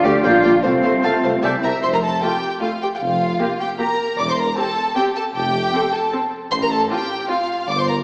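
An up-front violin section carries the melody in this mischievous, magical cinematic cue, its warm, expressive bowing colored by vibrato and portamento at a brisk 154 BPM in 3/4 and F major. In the opening moments a bright, airy flute, a clear oboe entering at 0.2 seconds and a very quiet, mellow clarinet trace short second lines over sustained French horn chords, and all four winds stop by 1.6 seconds. A second violin section adds a dark, woody counterline with soft attacks, while a distant viola section supplies smooth, even accompaniment. The low end comes from a dark cello section, with a roomy tuba and a double bass section sitting in the background beneath it. Harmony moves through Gm7, F/C and C before settling into F, Gm7/F, C/E and F/A, and the ensemble sounds heard from further back on a reverberant scoring stage with a small-speaker tone in this short passage cut from a longer piece.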